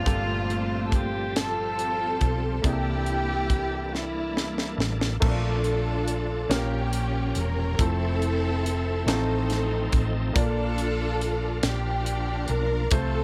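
A small, lightly reverberant room frames this hopeful, soulful slow-gospel excerpt at 47 BPM in a straight 6/8, where a breathy, whispered alto saxophone sounds distant and intimate in the melody until 4.9 s while lush, bowed symphonic strings carry the tune up front. Behind them, a clear grand piano with short sustain accompanies, and a shouting tonewheel organ holds sustained chords through a slow rotary speaker and chorus vibrato, moving from Gm11 and C13 into Bbmaj7, Bbm6 and Fmaj7. A dark, round, punchy hollow-body bass and a tight funk kit with a high-tuned snare sit forward, the drums playing a fill from 3.9 to 5.2 s.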